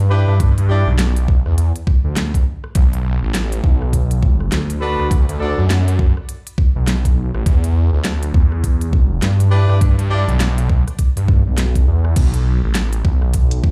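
Played on a big sound system in a bare room, this playful, funky glitch hop excerpt pairs a mostly dry mix with a large studio reverb and a swung sixteenth-note feel. A swirling, thick, detuned saw bass with phaser and tube saturation sits up front alongside a knocking electronic kick, while a pop drum kit adds a fat snare, crisp hats, rim clicks and crash cymbal. A present, jazz-style horn section fires short stabs at 0.1, 4.8 and 9.5 seconds, roughened by 12-bit sampler grit, sidechain pumping and delay, over chords moving from Em7 to Bm7 and back.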